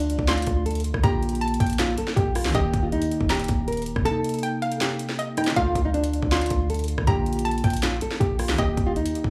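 Trap hip hop at 159 BPM in a half-time feel, dark and eerie, where a full-bodied, thumb-plucked nylon-string guitar carries the melody through tape echo over warbly, nostalgic lo-fi synth keys thickened with chorus. A deep, sine-toned 808 bass sustains beneath a hard-clipped, up-front trap kit of sharp snare, metallic hats, handclaps and rim clicks, while a hollow, nasal square-wave pluck with chorus and echo adds a bouncy high second line from 0.3 seconds. The kick drops out between 4.1 and 5.6 seconds of this short, gritty excerpt, which sits in a studio reverb and moves through Dm, Bb, Eb and Cm7.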